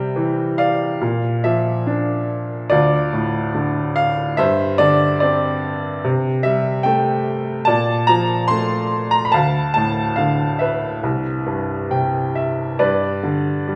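A lush recital-hall reverb surrounds this peaceful classical excerpt, where a bright, woody upright piano sits up front with a long, natural sustain. The lone piano plays lyrically in 4/4 with free rubato and uneven beats, ranging from C2 to C6 through calm harmonies such as Bbmaj7, Dm, Gsus4 and Cmaj7. A brief piano fill arrives at 11.5 seconds before the music settles on a G chord at 12.8 seconds.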